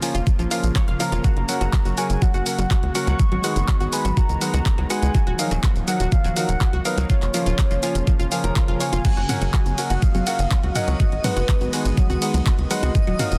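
The mix is dense and heavily limited in a digital ambience: a hopeful, expansive stretch of progressive house cut from a longer piece, moving through A#m, F#, G#m7 and D#madd9 chords with a straight feel in 4/4. An up-front, knocking electronic kick with overdrive drives it alongside a tight, nasal sequencer bass of sawtooth and square waves with a punchy filter pluck. Behind them, an overdriven pop drum kit of crash, ride, hi-hat, handclaps and shaker sits in the mix, and both kits sound re-recorded in a small room. A lush, detuned unison pluck plays arpeggios and a clear grand piano adds stabs, both through digital delay and sidechain pumping, over a smooth, wave-folded analog pad of sustained chords with chorus in the background. From 1.0 s a round, dark, octave-layered synth lead carries the melody with vibrato, chorus and phaser. At 9.0 s dry electronic toms and congas enter in the background, and at 9.5 s a twinkling granular texture with octave-up shimmer and its own reverb joins them.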